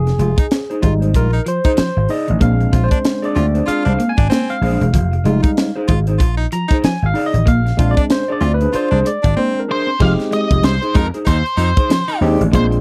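A barky tine electric piano, bright and clean through a combo amp with a lush chorus, sits up front and solos in stabs from the start until 10.0 s in this sly, hypnotic funk excerpt at 95 BPM in 4/4, swung on the 16ths in F dorian. Beneath it, a punchy, amped vintage slap bass and a tight funk kit, with a high-tuned snare, tight kick, hi-hat and crash, both sit up front. A slightly broken-up, picked electric guitar plays a riff in the background, while a mellow, fingered electric guitar adds accompaniment and a close-miked baritone saxophone with vibrato carries a second line. During a break that begins at 9.4 s, a dark octave-fuzz lead guitar, distorted and coloured by slapback echo, takes the melody from 9.7 s. The harmony moves between Fm7 and Bb9, and the dry, close 1970s-style studio sound keeps the band intimate.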